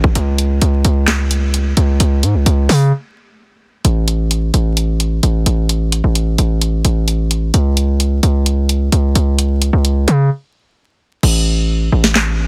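A distorted, saturated 808-style bass and an up-front electronic trap kit with a hard-clipped kick, sharp snare, bright hi-hats, handclaps and crash open this eerie, dark half-time trap cut together in a dry, dense, heavily limited mix dusted with vinyl crackle, dropping into breaks at 2.9 and 10.3 seconds before the hi-hats fall away at 11.2 seconds.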